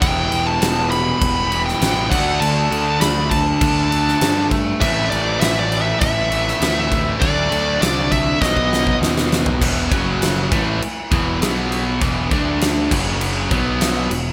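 Hard rock in E minor at 100 BPM, aggressive and heavy, this short cut from a longer piece is led by an up-front dark, smooth overdriven lead guitar that carries the melody until 9.0 seconds, over a huge arena drum kit with a fat snare, punchy kick and gated reverb. Three overdriven guitars drive the riff: a bright, chorus-soaked cranked stack sits in the background, beneath it a double-tracked crunchy guitar and a sludgy one play very quietly, while a punchy fuzz bass anchors the low end and a very quiet piping tonewheel organ on slow rotary speaker holds sustained chords. A drum fill at 8.4 seconds leads into a power-chord section from 9.6 seconds, all framed in a bright 1980s-style digital production with plate reverb.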